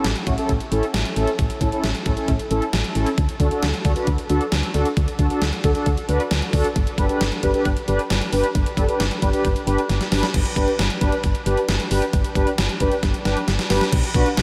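A gated digital drum machine, a solid FM bass and a mellow synth brass part all start together in this melancholic yet driving synth-pop passage, cut from a longer piece. The drums sit up front with a thumpy kick, an overdriven edge and a snare drenched in gated reverb, with hi-hat and crash cymbal filling out the sampler-style kit, which sounds re-recorded in a large room. Beneath them, the FM bass is punchy and dark, its round, fast-attack notes decaying in the low register. The sawtooth synth brass carries the harmony up front in a brassy, detuned voice, with chorus, vibrato and a filter sweep over sustained chords that move from A to D to G. Drum fills arrive at 9.9 seconds, just before a new section begins at 10.3 seconds, and again at 13.0 seconds, all within a dreamy mix soaked in a huge ambient reverb.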